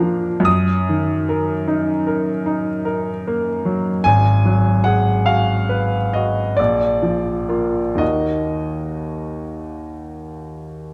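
A bright baby grand piano opens this short fragment of a romantic classical nocturne, playing alone and placed up front in the sound. The mood is melancholic and mournful, with the music moving slowly in 9/8 metre and a flexible, rubato feel that lets each phrase breathe. The piano spans from deep Ab1 in the bass to a ringing Eb6 at the top, its brilliant, natural tone carrying a long sustain that lets notes hang in the air. The harmony passes from an E-flat minor chord over G-flat at 0.5 seconds through A-flat minor seventh and B-flat before settling back on E-flat minor at 8.0 seconds. A moderate recital-hall reverb surrounds the instrument, and the overall production leans dark and warm, giving the brief passage an intimate, sorrowful glow before it is cut off at 10.9 seconds.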